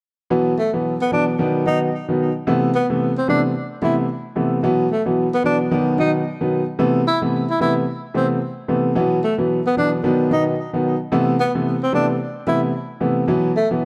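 Afrobeats with a sultry, smooth, swung feel, where a boxy grand piano with audible action noise and long sustain cycles through Esus2, B and Amadd9 beneath a breathy, whispered tenor saxophone solo, close-miked with vibrato, a soft attack and delay, both up front in a dark, intimate small-room production.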